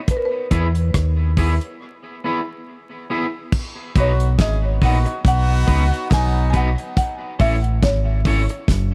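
A laid-back roots reggae groove in 4/4 with a gentle sixteenth-note swing anchors this short cut from a longer piece, carried by a damped 70s drum kit with a fat snare, tight kick, rim clicks, hi-hat and crash, its dry, rolled-off sound sitting up front. A deep, round dub bass, dark and fingered, enters at 0.5 s and holds the low end just as prominently, while an electric guitar at the edge of break-up adds twangy, picked accompaniment touched with tape echo. Over this, a buzzing marimba with medium hard mallets carries the woody, hardwood-barred melody, also bathed in tape echo. A break arrives at 1.8 s, and after the music moves from E to B, a clear, punchy horn section with vibrato slips in as a second line from 4.0 to 6.7 s before the harmony shifts to A. The mix is echo-heavy with light reverb and a layer of vinyl crackle, giving the whole a warm, easygoing dub atmosphere.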